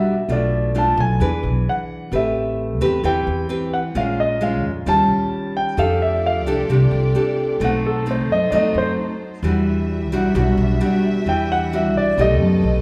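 Bossa nova with a melancholic, smooth mood, cut from a longer piece: an up-front concert grand piano carries the melody with a natural tone and deep bass, over fingerpicked nylon-string guitar that sounds bright and classical, complete with finger squeak. A woody, thumpy pizzicato upright bass joins at 0.3 s, and at 5.8 s a lush bowed string section adds soft-attack sustained chords with vibrato, sitting lower in the mix. The band plays live in one room, bathed in a wet, large studio reverb, moving through rich chords such as Am9, F69 and B7b9.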